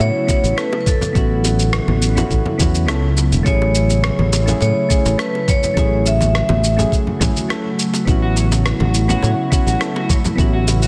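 Ringing, metallic vibraphone with delay carries the melody over soft, round electric-piano-like synth keys with chorus, a breathy, detuned pad with vintage 12-bit grit, a growly, up-front fingered bass, a tape-warm electronic kick, a gritty overdriven shaker and rim click, and dry bongos and congas in the background in this blissful sunset chillout excerpt at 104 BPM in A major, moving between A6 and F#m7/A in a moderate concert hall, with the vibraphone stopping at 6.9 seconds and a dark, slightly broken-up electric guitar entering with delayed arpeggios at 8.2 seconds.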